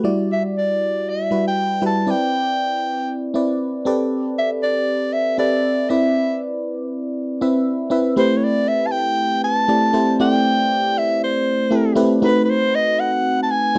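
In a straight 4/4 pulse, this slick, nocturnal pop fragment sets a whispered, breathy soprano saxophone melody with slapback echo over glassy, bell-like FM electric piano chords touched with subtle chorus, both up front in a dry, close 1970s-style studio sound, with the harmony moving from Em9 and Cmaj9 to Am9 at 8.2 s and landing on B7b9 at 12.2 s.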